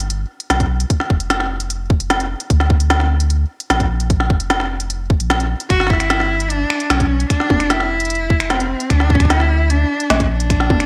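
A straight 4/4 groove drives this wistful, intricate IDM passage cut from a longer piece. An organic electronic drum kit with finger snaps, smooth hi-hats, a woody snare and toms sits up front in a small room, its gated reverb giving the hits a clipped, produced snap. A tight electronic kick joins at 0.6 seconds and stands a touch louder than the other parts. Beneath them, a round, sine-like sub bass holds deep, sustained notes with a fast attack. At 5.7 seconds a single bowed cello enters, rich and expressive, with vibrato, a soft attack, portamento and a trailing delay. The harmony moves through G, Bb, F5 and Dsus2 in a bright, 1980s-style digital production with light reverb.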